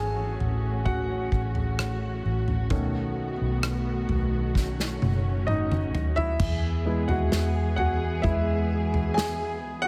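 Hopeful and tender, this slow 65 BPM pop ballad in E major features a warm, up-front grand piano carrying the lead over veiled, con sordino strings holding lush sustained chords and a round, foam-muted fingered electric bass, while an acoustic drum kit played with bundle sticks enters at 0.4 s with a punchy kick, dark cymbals and rim clicks, playing a fill from 4.6 s into a new section at 6.4 s, all set in a studio ambience.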